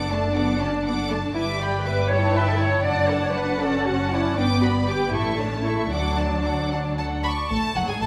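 The cello section stands out most, its woody, dark tone carrying the bass from F#2 up to D5 with vibrato and a lush, smooth top. This is a quick, graceful and spirited classical-period movement for string orchestra in D major, moving in 6/8 at 79 beats per minute with a straight feel, taken from a longer piece. A focused, rich first violin section carries the melody between F#5 and D6, while the second violins, sounding more distant, play a warm, lush second line. Violas fill in a dark, expressive accompaniment, and the double basses sit close and up front beneath the cellos. The harmony moves from D/F# through Em7/G and A7/G, back to D/F#, then G, A and D, before turning to F#madd9 at 7.5 seconds. The whole ensemble plays from the start to 8.1 seconds in a moderate concert hall reverb.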